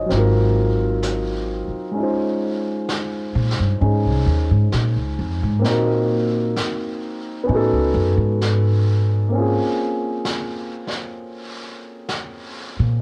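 A slow swung 4/4 pulse carries this intimate, wistful jazz ballad, cut from a longer piece. The upright bass sits up front with a woody, growly pizzicato tone from steel strings, and from 2.0 seconds it takes a solo that runs to the end. A dark, mellow concert grand piano accompanies throughout, with deep low notes and a long, natural sustain, moving through rich harmonies such as Dbmaj7, Cm7b5 and Bbm9. Brushes on a vintage kit, playing snare and hi-hat, sit mid-forward at a quieter level, their warm small-room sound softened by a rolled-off top and a cassette tape colour. With little reverb, the home cassette recording feels close and unadorned.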